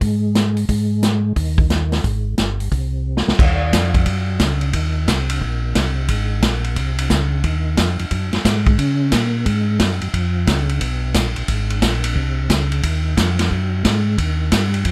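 A smooth, clean tonewheel organ with key click, chorus vibrato and a slow rotary speaker carries the low end in this swinging, bluesy soul jazz organ trio excerpt, sitting up front alongside a vintage acoustic drum kit. The kit has a natural small-room sound with a punchy kick, a medium-tuned snare, a rolled-off top and hi-hat, ride and crash cymbals. A drum fill from 3.0 to 3.4 seconds leads into a new section that runs to the end, all with a dry, close sound.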